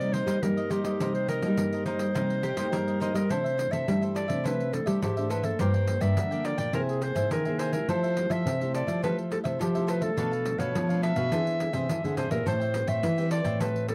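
A clear, smooth-topped clarinet leads up front in classical style over a lively, nostalgic samba-choro at 105 BPM, moving from C minor into C major at 3.3 s in this short cut from a longer piece. A thumb-plucked nylon-string guitar with fresh strings carries the bass, a second fingerpicked nylon-string guitar adds accompaniment with audible finger squeak, a crisp picked cavaquinho fills in chords, and a jingly, saturated pandeiro struck with hard hands supplies the percussion. A woody, double-strung mandolin slips in a brief second line from 2.4 s to 3.3 s, all within a dry, close 1970s-style studio sound with light reverb.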